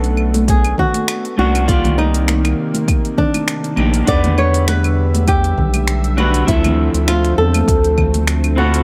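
A fingerpicked flamenco guitar carries the wistful, smooth melody up front with tape echo in this sunset chillout piece at 100 BPM with a lightly swung 16th-note feel, joined by a slightly broken-up, scooped electric guitar also treated with tape echo, a thick, warbling detuned pad with chorus in the background, a round, dark analog bass up front, an overdriven deep house kit of claves, finger snaps, metallic hi-hats and shaker, vintage band-limited congas played with hard hands from 0.3 seconds, and a deep, overdriven electronic kick from 0.5 seconds, set in a digital ambience over minor ninth chords.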